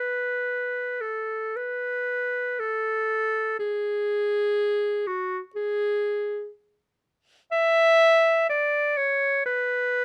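A bright clarinet plays alone and up front in this short classical excerpt, a free, expressive solo with a meditative, mournful mood. The tempo sits around 55-64 BPM in 4/4 with a rubato feel, tuned to A4 = 439 Hz, and the melody moves within a range from F#4 to E5. Close, detailed miking and a dry room keep every nuance of the tone in clear view across its 10 seconds.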